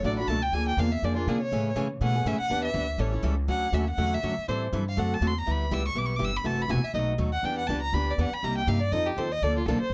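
Playful and swinging, this short excerpt of acoustic jazz manouche at a brisk 243 BPM features an expressive bowed violin soloing with soft-attacked vibrato and portamento over a boxy, picked parlour steel-string guitar and a woody, thumpy pizzicato upright bass on gut strings, moving from A major into D major at 3.5 seconds through rich jazz chords under light reverb and a dark, warm production.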